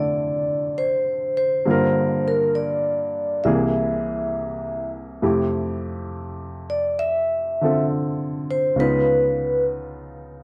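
A metallic, ringing vibraphone struck with medium mallets carries the melody up front, its motor vibrato shimmering through a romantic, late-night swing jazz excerpt. A woody, smooth upright piano with a vintage tone and short sustain sits close beside it in accompaniment, moving through chords such as F6, Caug7, Fmaj9 and Db9, and it plays on alone after the vibraphone stops at 9.6 seconds. The dry, close 1970s-style studio sound carries light reverb and a small room ambience.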